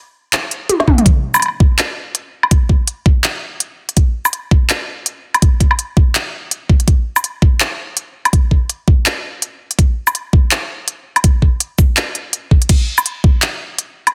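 Heavy and tense, this drum and bass excerpt runs at 165 BPM in 4/4 with a half-time feel and a 16th-note swing of 57%. An organic electronic drum kit carries the groove from 0.3 seconds, built from a woody snare, smooth hi-hats, shaker, handclaps, toms, woodblock and crash cymbal, all with a tape-warm, produced character and placed up front. A short drum fill arrives at 0.7 seconds, leading into a drop at 1.1 seconds. An electronic kick drum enters at 0.9 seconds with a knocking, overdriven punch, also up front and louder than the kit. Both parts sound re-recorded in a small room, yet the mix carries little reverb, and the dense, heavily limited modern master keeps the whole excerpt tight and forceful.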